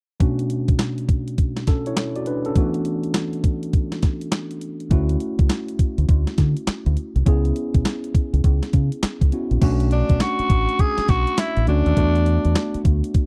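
Confident and slick, this new jack swing R&B excerpt struts along at 102 BPM in 4/4 with a swung sixteenth-note feel, moving through Bm7, E9sus4, Dmaj7 and C#m7 in B dorian. A crisp 8-bit digital drum machine runs from the start, its thumpy kick, medium-tuned snare, hi-hat, handclaps and crash sitting up front with a tape-warm, sampler-style character. Beneath it, a worn, slightly out-of-tune tine electric piano supplies clean accompaniment through a combo amp, lower in the balance. A deep, round dub bass, fingered and punchy, joins at 4.9 seconds with a dark, direct-amped tone. At 9.9 seconds a breathy, raspy tenor saxophone steps forward with a short pop-style solo line, its gritty vintage edge trailed by slapback echo. The sound is dry and close, like a 1970s studio session, with little reverb.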